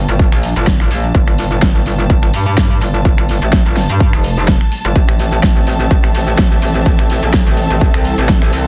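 Bass house at 126 BPM in G dorian with a bouncy, gritty swing, this excerpt rides an up-front, overdriven electronic kick and a layered big-room kit of finger snaps, hi-hat and a huge snare beneath a metallic, saturated FM wobble bass with chorus and sidechain pumping, while lush bowed strings pump over a very quiet, detuned sawtooth pad moving from Gmadd9 to Am at 5.0 seconds, a barely audible downlifter gone by 1.1 seconds, all in a dense, dry, heavily limited mix.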